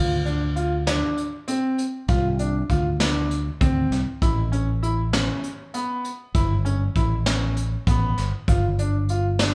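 A punchy fretless electric bass anchors this driving, brooding progressive instrumental in 7/8 at 197 BPM (eighths), sitting up front in D dorian as the chords move from Dm to A7 at 4.2 seconds and on to G7(no3) at 8.5 seconds. A bright, worn grand piano with long sustain plays arpeggios over it, and a vintage brush drum kit enters at 0.3 seconds with a warm, rolled-off top, a medium-tuned snare and a punchy kick. The band plays live in one room with a moderate large studio reverb, in a short cut from a longer piece.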